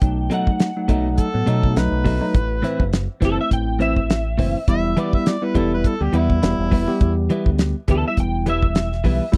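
Straight-eighth soul blues in E minor at 103 BPM, soulful and brooding, this short clip moves through B7, Am and Em over a damped 70s drum kit with dark cymbals, a fat snare and a tight kick sitting up front, plus a round, fingered electric bass. A bell-like tine electric piano comps beneath a slightly broken-up, lo-fi lead guitar through a small old amp with analog chorus, while a bright, direct-recorded clean guitar adds picked stabs bathed in spring reverb from 0.3 seconds. A gritty, overdriven harmonica enters at 1.2 seconds with jazz-style scooped notes, vibrato and tongue slaps, and the whole dry, close 1970s-style studio sound keeps every part intimate.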